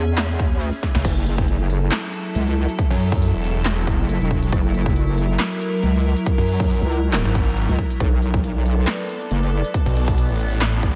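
An evolving, morphing wavetable pad with chorus, phaser and sidechain pumping opens alongside a saturated, detuned wobble bass, before a big-room dance kit with crisp hats, handclaps, rim clicks, snare and crash and a punchy, tape-warm electronic kick arrive within the first 0.4 s, and, after a drum fill, a snarling, growling distorted saw bass joins at 0.9 s, driving this heavy, aggressive half-time wobble dubstep fragment at 138 BPM in F# minor over chords moving from C#m through F#m7 and F#7 to Bm7.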